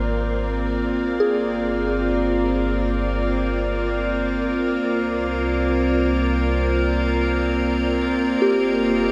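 Reflective and spacious, this ambient excerpt drifts in free time, all three parts sounding together from 0.0 to 9.1 seconds. An evolving wavetable pad sits up front, its detuned, morphing tone holding sustained chords with a slow attack and long release, bright under chorus and its own built-in reverb. Behind it, a soft FM synth bell traces gentle, mellow arpeggios with quick, decaying notes, colored by chorus, phaser and delay. Underneath, a round sine sub bass supplies deep, rounded low notes. The harmony moves from Ab6 through G7sus4 at 1.2 seconds and C9sus4 at 4.8 seconds before settling on F5 at 8.4 seconds, the whole placed in a vast, echoing cathedral-like space with a long, wet reverb tail.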